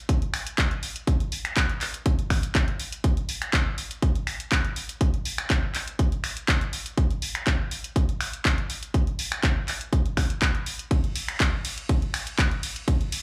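House drum excerpt with an energetic, bittersweet mood, where a punchy, tape-warm electronic kick drum sits up front beside a layered house drum kit of finger snaps, handclaps, hi-hat and ride cymbal, both playing a straight 4/4 groove from the opening to about 13 seconds with little reverb beyond the small room they were re-recorded in.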